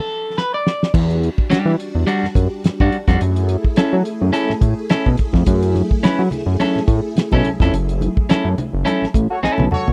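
Funky and hypnotic, this dry, close 1970s-style funk excerpt opens with a band accent and drum fill as a slightly broken-up electric guitar and a cloth-damped, thuddy drum kit with dark cymbals start, a fat, detuned analog bass and shimmering string-machine violins with ensemble chorus join over Em9 moving to F#m7, ringing background congas enter at 5.5 s, and a distant, roomy horn section slips in at 9.3 s.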